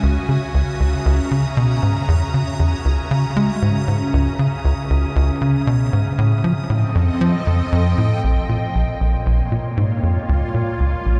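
Cosmic and hypnotic, this excerpt of ambient, sequencer-driven space music in C# dorian moves at 117 BPM as a tight, punchy sawtooth-and-square sequencer bass with a filter pluck and analog delay drives a riff up front beneath an evolving, morphing wavetable pad of detuned sine tones sustaining chords through ensemble chorus, while a faint bubbling stepped-filter texture of resonant random filter steps glints high above, all set in a dark concert hall reverb as the harmony travels from C#m to F7 at 6.2 seconds and settles on Bbm when a new section arrives at 8.2 seconds.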